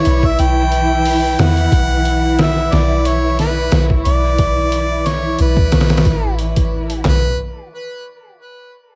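A bright harmonica melody, a lush bowed string section and a deep, round 808-style bass sound together from the very start of this brooding, cinematic trip hop fragment, cut from a longer piece. The solo harmonica sits up front with light vibrato in a classical style, trailed by tape echo, while the strings hold smooth, even chords from a distant place in the mix. A moment later a gritty, compressed sampler-style drum kit joins over a lightly swung sixteenth-note feel. Its thumpy kick, medium-tuned snare, hi-hat, handclaps and toms are pitched down, tape-warm and dressed in studio reverb. The soft, dark bass decays after each fast attack, and the harmony moves from E5/B to A5 at 6.4 seconds. The strings drop away at 7.1 seconds, and the harmonica and bass carry on until 7.4 seconds in an echo-heavy mix.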